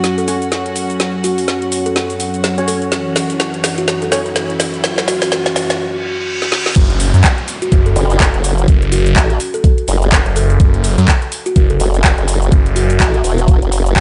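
Aggressive and gritty, this bass house excerpt runs at 125 BPM in F# minor with a swung 16th-note feel, building for its first 6.8 seconds before a drop. A woody, ringing kalimba carries the melody over a bright, evolving pad with 12-bit sampler grit and pumping sidechain, while a soft, intimate chamber string section adds bowed texture until 5.8 seconds. Hollow, organ-like stabs with chorus and delay carry a filter sweep early in the build, and background risers, a reverse cymbal and a downlifter lead toward the drop, alongside a garage kit of woody snare, metallic hats, handclaps, shaker and crash playing fills. At 6.8 seconds an overdriven, knocking electronic kick arrives up front with a swirling, thick detuned saw bass drenched in phaser. From 8.0 seconds a formant-sweep wobble bass with tube saturation joins, pushing the low end into a gritty, pumping groove.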